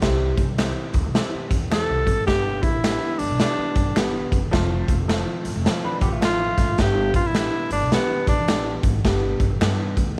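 This upbeat, 1960s-style soul excerpt opens with a worn, slightly detuned upright piano, a woody pizzicato upright bass and a gritty, saturated garage drum kit, whose punchy kick and hi-hat sit up front in a bright, pumping stone room. The groove moves at 106 BPM in 4/4 with a swung eighth-note feel in G mixolydian, cycling through C, G and F chords with a joyful, uplifting mood. Very quiet, close finger snaps join at 0.6 seconds, and a smooth-topped tenor saxophone takes the solo melody from 1.7 seconds, its light vibrato carrying a jazz inflection. A slightly broken-up, lo-fi electric guitar slips in behind for a brief riff at 5.8 seconds. Studio reverb and vinyl crackle give the whole recording a vintage sheen.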